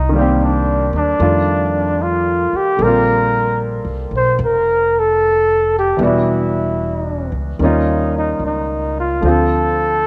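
Intimate and smoky, this short jazz ballad excerpt moves at an unhurried swing in 4/4, cut from a longer piece and tuned slightly below standard pitch. A flugelhorn carries the melody up front in a solo jazz style, its tone warm with vibrato and a smooth top, lightly colored by a cassette tape effect. An upright bass plucked on steel strings sits up front as well, woody and thumpy, while a clear, natural baby grand piano enters at 0.1 seconds to accompany in its middle register, also passing through the cassette tape effect. The harmony drifts through rich extended chords, from Cm7 and F13 to Bb69, then Em9, Eb9 and Dm7. Moderate spring reverb and small room ambience give the home cassette recording a close, lived-in sound.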